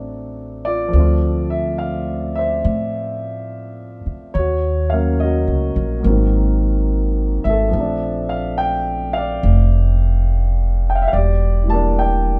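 Smoky and melancholic, this short cut from a longer jazz ballad drifts along at an unhurried pace with a gentle swing in its eighth notes. A warm concert grand piano carries the accompaniment throughout, its open tone ringing with long sustain and a deep low end. Beneath it, a pizzicato upright bass on gut strings gives a woody, thumpy pulse, sitting up front and slightly louder than the piano. The harmony wanders through rich, shadowy changes, moving from D7 to Dm9 at 0.9 seconds and on to Bbmaj9 at 7.7 seconds before settling on Em7b5. Light reverb and the feel of two players sharing one room lend the recording an intimate, late-night air.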